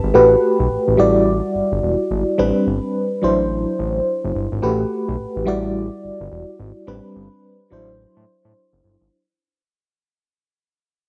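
An up-front FM electric piano with tremolo carries this slick, punchy new jack swing cut from a longer piece, its mellow, warbling vintage tone colored by a phaser and cassette tape character as it cycles through Gmaj9/A, Em9, Am11 and D9/A. Beneath it, a fat analog bass with a thick, detuned sawtooth sound and fast attack anchors the 107 BPM swung groove in 4/4. The home cassette recording sits in a wet spring reverb, and the whole passage fades out from 0.1 to 9.1 seconds.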